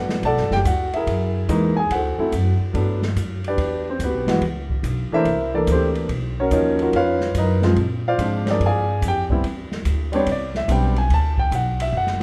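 Playful and relaxed, this swinging jazz piano trio excerpt at 143 BPM sets a present, polished grand piano up front over woody, thumpy pizzicato upright bass on gut strings and a dark, smooth acoustic drum kit of hi-hat, boomy kick, medium-tuned snare and dusky ride cymbal, with the piano taking a solo from 2.7 seconds through chords such as Gmaj7, Bmaj9#11 and Cmaj9, all set in a recital hall reverb.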